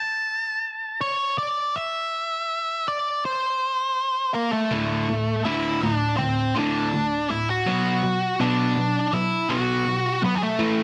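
A dark, distorted lead guitar with an octave fuzz opens this brooding rock excerpt alone, picking out a melody over a straight 81 BPM pulse in 4/4. Its slapback echo gives each note a short, hard shadow, and the line settles onto a C chord shortly after starting. At 4.7 seconds a crunchy, overdriven rhythm guitar enters with a double-tracked riff in its low register, moving the harmony to D5 and then to B minor. Both guitars sit up front at an even level, the riff guitar's warm grit anchoring the lead's darker buzz until the excerpt cuts off at 10.8 seconds. A light reverb and a dense, heavily limited modern master keep the sound tight and forceful.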